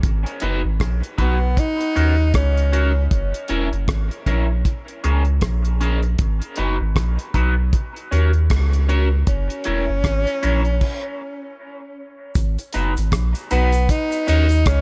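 This dub reggae excerpt moves at a relaxed 78 BPM in 4/4 with a swung sixteenth-note feel, settling into a meditative, deep mood in G# minor. A soft, round sub bass sits up front from the start, its fast attack and sustained tone anchoring the groove beneath a damped, dry 70s drum kit with a tight kick, crash cymbal, hi-hat and rim click. An electric guitar through a small old amp supplies twangy, slightly broken-up picked accompaniment, colored by phaser and dub echo, as the harmony cycles through G#m7, D#m7, F#7 and A#m7. A clear tenor saxophone with vibrato and a smooth top carries the melody in solo statements, first briefly near the opening and again from 9.3 seconds, its lines carried by dub echo. The band drops out for a stop at 10.8 seconds, and when the groove returns at 12.4 seconds a distant cabasa joins far in the background. The echo-heavy mix carries a light reverb throughout.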